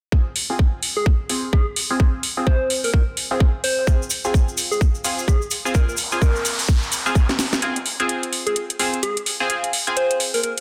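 Aggressive and swaggering, this bass house excerpt swings its 16ths over an F minor chord, with a nasal, band-passed sawtooth stab carrying phaser, lush chorus, sidechain pumping and delay under a filter sweep, while a tight electronic kick and a house kit with cracking snare and metallic hats sit up front. A round, keys-like FM lead with a sub octave and chorus enters at 1.0 s, joined by a grainy acoustic cabasa from 3.9 s and an electronic noise sweep from 6.0 s. After the kick drops out at 7.3 s with a drum fill, a build-up begins at 7.6 s on the dense, heavily limited master.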